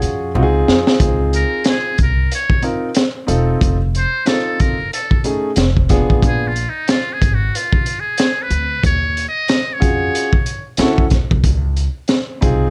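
Jazz-hop with a smooth swing, this short excerpt has a drum fill at 0.4 seconds that leads into a muted trumpet solo from 1.0 seconds, its buzzy, breathy tone sitting up front in plate reverb until it drops out at 10.7 seconds. A gritty breakbeat kit with a punchy kick and a high-tuned snare carries vintage sampler crunch. Beneath it, a woody, growly pizzicato upright bass and an intimate grand piano with audible action noise move through rich extended jazz chords.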